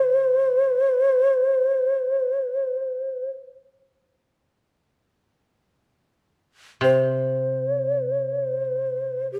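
In free time, this calm, austere fragment of Japanese chamber music unfolds over about 9.4 seconds, cut from a longer piece. A breathy shakuhachi carries the melody throughout, sitting up front around C5 with a hollow bamboo tone, a crisp chiffing attack, lifted highs and vibrato. Beneath it, a koto played with fingerpicks adds a low, mellow accompaniment between C3 and D3, much softer in the balance. Its dry, woody plucking is heard at the very start, until 0.8 seconds, then returns at 6.8 seconds to carry through to the end. A moderate recital hall reverb of about 1.4 seconds gives the sparse texture a sense of quiet space.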